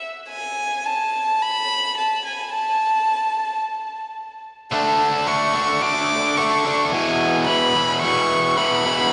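Set in a straight, steady 4/4, this cinematic, euphoric rock fragment is cut from a longer piece. A single violin carries the melody from 0.3 seconds, played up front and close with a warm, intimate tone, light vibrato and an airy sul tasto bow, its line touched by delay. The opening passage leaves the violin to float over a chordless stretch until a biting, bright overdriven electric guitar arrives at 4.7 seconds, picked and double-tracked, driving a low riff over D5 and then E chords. From that point the music builds up until the clip ends at 9.1 seconds. Both parts sit up front inside a lush hall reverb that soaks the dreamy mix, with the top end cut above 10.7 kHz.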